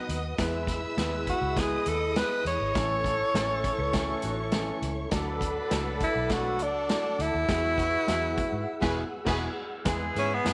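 A straight 4/4 groove at 101 BPM from a vintage drum kit with a punchy kick and dark cymbals and a round, foam-muted electric bass drives this joyful stretch of uptempo 1960s-style soul in E major, as a breathy tenor saxophone with scooped notes carries the melody up front from 1.3 s over an intimate grand piano with audible action noise, a soft, flute-like tonewheel organ with chorus vibrato and key click, lush bowed strings with portamento, and a distant, roomy horn section in the background, while a very quiet, clean electric guitar riff slips in twice and the band hits an accent at 8.7 s, all within light small-room reverb.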